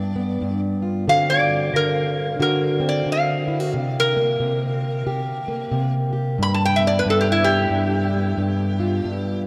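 Gritty and laid-back, this short cut from a longer acoustic country blues piece moves with a loping swing in four. A metal-body resonator guitar carries the melody, played with a steel bar and fingerpicks, its tone bright, metallic and nasal as it sits up front and takes a slide solo across the whole 9.5 seconds. Beneath it, a fingerpicked, plugged-in steel-string parlour guitar supplies the accompaniment, its sound dark and boxy and just as forward in the mix. The harmony moves from G7 to D7, settles on a C5 power chord, and arrives back at G by 6.4 seconds. A wet cathedral reverb places the duo in a vast, echoing space, with a long tail that hangs behind every note.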